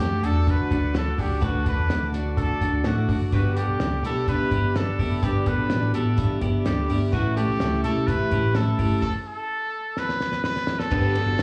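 A bright trumpet melody with light vibrato, slapback and tape echo leads this breezy, youthful jangly indie pop, heard live through a club PA, over full-bodied picked jumbo acoustic guitar, twangy twelve-string electric arpeggios, a faint detuned sawtooth pad, round foam-muted bass and a cloth-damped, thuddy drum kit with dark cymbals and a fat snare, moving from D to G to A before a stop at 9.0 seconds and a drum fill at 10.0 seconds.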